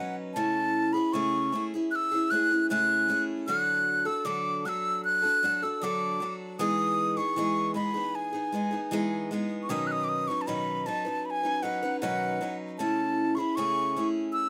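A wooden flute with an airy, warm tone and vibrato sings the tongued melody up front throughout this unhurried, gentle acoustic folk fragment, carried on a bright, fresh-stringed picked steel-string guitar and a light reverb that keeps the close, detailed sound intimate.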